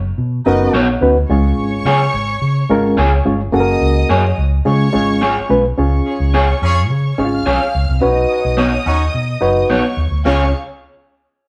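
A straight, danceable 4/4 soul groove opens with a round, amped fingered electric bass sitting up front, joined at once by a reedy, lightly overdriven electric piano with harmonic tremolo and slightly broken-up, picked guitar stabs dipped in spring reverb. A distant, lush violin section bowed sul tasto with a dark, woody tone adds a second line from 1.3 seconds. A clear, roomy horn section in octaves with light vibrato briefly touches in near the start and returns at 6.1 seconds, all captured as a band playing live in one room with moderate reverb, in a warm excerpt cut from a longer piece.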